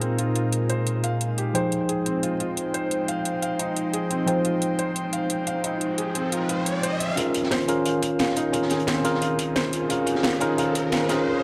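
A worn, slightly out-of-tune tine electric piano sits up front with digital delay over an airy, breathy chorused pad carrying a filter sweep and a felt-muted upright piano playing soft, low-passed arpeggios, while a drum and bass kit with a cracking snare and metallic hats drives this soulful, melancholic liquid drum and bass excerpt; a background riser enters at 5.5 seconds, and at 7.2 seconds a gritty, saturated breakbeat kit with a high-tuned snare and a very quiet knocking electronic kick enter together for the build-up, set in a lush hall reverb with a dark production.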